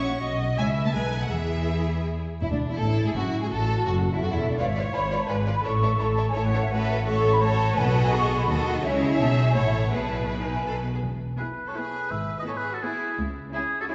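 Graceful and lively, this quick classical-period movement for symphony orchestra moves at 168 BPM in 3/4, starting in A major and shifting to E major from 6.7 s. Rich, bowed violin sections carry the expressive vibrato melody and a second line over violas, lush cellos and double basses. Airy flutes add a second line from 2.4 s, timpani on medium mallets sound briefly in the background at 7.8 s, and a warm, vintage solo oboe steps up front at 11.4 s, all set back in a scoring-stage reverb with a softened top.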